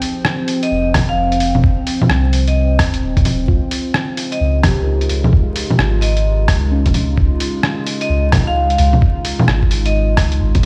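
Future garage at 130 BPM in 4/4, with a swung sixteenth-note feel and a nocturnal, rainy mood, heard in a short cut from a longer piece that moves from Fm7 to Dbmaj7. A warbling, nostalgic pad carries sustained chords from the start, its lo-fi 12-bit grit, chorus and built-in reverb blurring into a slow-attack haze. Beneath it, muted felt-like synth keys sit dark and intimate in the background, coloured by chorus, phaser and digital delay. A lo-fi sampler-style kit of bongos, hi-hat and rim click sits up front with a muffled, pitched-down, tape-warm texture, while a thumpy, compressed electronic kick arrives at 0.9 seconds. A round, deep sine sub bass with tube saturation enters at 0.7 seconds and pumps with the sidechain alongside the pad and keys. A bright, metallic vibraphone struck with hard mallets rings out a melody with digital delay, and the whole mix sounds as if played on a big system in a bare stone room, dusted with vinyl crackle.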